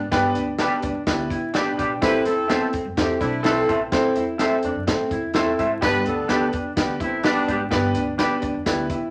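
Set in a straight 4/4 at an uptempo pace, this short cut from a longer 1960s-style soul piece feels uplifting and warm. An acoustic drum kit with a punchy kick, medium-tuned snare and hi-hat sits up front in an airy studio room, while a woody, bright pizzicato upright bass on steel strings holds down the low end. A clear, worn upright piano, slightly detuned and with long sustain, carries the accompaniment up front and adds a fill at 1.3 seconds. In the background, a dark, clean hollow-body jazz guitar plays a picked riff with tube saturation, and a twangy electric guitar through a small old amp adds slightly broken-up, lo-fi stabs with a warbly pitch drift. A tight pop-style horn section with light vibrato plays a second line from 2.0 to 7.6 seconds as the chords move from G to A minor and back to G. Wet studio reverb and vinyl crackle give the whole a vintage sheen.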